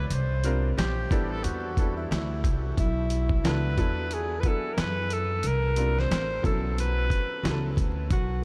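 Jazz-hop with a nocturnal, mellow mood, this short cut from a longer piece opens with a breathy alto saxophone carrying the melody through analog delay over a woody, pizzicato upright bass and a gritty, compressed sampler-style drum kit with a thumpy kick and fat snare, all swung on the sixteenths. A bright, slightly detuned upright piano enters at 0.4 seconds with sus-chord voicings, and a mellow tenor saxophone with scooped notes adds a quiet second line from 0.8 to 2.6 seconds. The dreamy mix is soaked in a huge ambient reverb and vinyl crackle.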